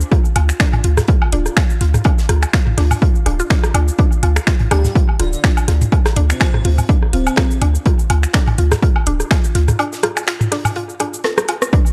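A swung 4/4 groove at 124 BPM drives this cool, quirky minimal techno cut in D minor, taken from a longer piece, with an overdriven electronic kick punching up front alongside a layered house kit of finger snaps, metallic hi-hats, rim clicks and shaker, both re-recorded in a large room. A garage kit adds rim clicks, toms and woodblock with tape echo from a small room, while a polished acoustic studio kit of hi-hat and snare sits in the background. A deep, sine-based sub bass with a pitch-drop attack pumps against the kick until 9.7 seconds, and a woody, round FM mallet pluck carries the riff through chorus, phaser and tape echo. A very quiet, tempo-synced triangle texture pulses steadily beneath, and an airy, dreamy lead with soft attack and vibrato drifts in briefly from 4.7 to 7.6 seconds. A break arrives at 9.8 seconds and closes with a drum fill, all within a dry, gritty hardware sound carrying transformer saturation and digital ambience.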